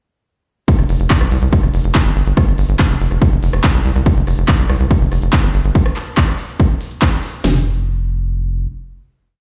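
Played back over a big sound system in a bare room, this short psychedelic trance piece carries a stone-room reverb and otherwise sits fairly dry, with a hypnotic, intense drive at 142 BPM. From 0.7 seconds, an up-front techno kit sets a four-on-the-floor pulse with a heavy kick, cracking snare, smooth hats and toms, while a lighter big-room dance kit, re-recorded in a large room, layers crisp programmed hats, handclaps and rim clicks on the backbeat. Underneath, a tight, punchy sequencer bass of sawtooth and square waves rolls in saturated sixteenth notes with a filter pluck and fast attack. The groove gives way to a final note at 7.4 seconds, and the bass carries on to 8.7 seconds as that ending rings out to 9.4 seconds.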